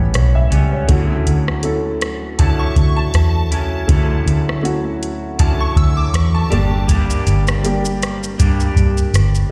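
This short cut from a longer indie and bedroom pop piece sounds like a live gig heard through the venue's PA, set in a recital hall reverb that gives it a sunny, nostalgic glow. At 80 BPM in 4/4 with a light swing on the sixteenths, a soft vintage rhythm box sits up front with a deep kick, metallic hats, rim click and shaker, while a dark, round, foam-muted fingered electric bass anchors the low end. An electric guitar through a small old amp adds a twangy, slightly broken-up picked accompaniment, thickened by lush chorus, a warbly pitch drift and slapback echo. Beside it, a woody, slightly detuned upright piano with audible action noise fills in the harmony, also touched with slapback echo. From 2.4 to 6.7 seconds a bright FM bell with a shimmering halo floats a high second line, dreamy and decaying through chorus and digital delay. The harmony moves from A9 to Dmaj9 in D major, then turns to G minor at 6.5 seconds.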